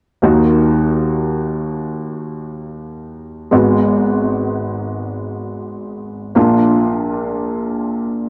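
Pop in free time, this short passage cut from a longer piece sits in E-flat harmonic minor and carries a heartbroken, longing mood. A warm upright piano supplies the accompaniment from 0.2 to 8.3 seconds, its woody tone and short sustain placed up front, reaching from low Ab1 up to Gb4. The harmony moves from Ebm to Abm7 at 3.5 seconds and arrives on Bb at 6.4 seconds, leaving the phrase unresolved. A moderate, lush hall reverb with a 2.6-second decay surrounds the sound, and a worn cassette-tape character adds a warbling pitch drift that gives the recording a faded, memory-like quality. The tuning sits slightly sharp, with A4 at 441 Hz.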